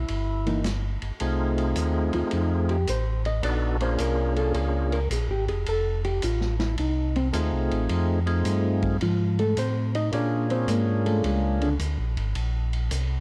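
A dark, clean hollow-body jazz guitar takes a solo from 1.2 seconds in this swinging, bluesy soul jazz organ trio excerpt at 108 BPM, riding over a percussive tonewheel organ melody with key click and slow rotary speaker, a round, mellow tonewheel organ bass line, and a vintage drum kit with punchy kick and dark cymbals, set in light reverb over F7#9 and Bb7#9 changes.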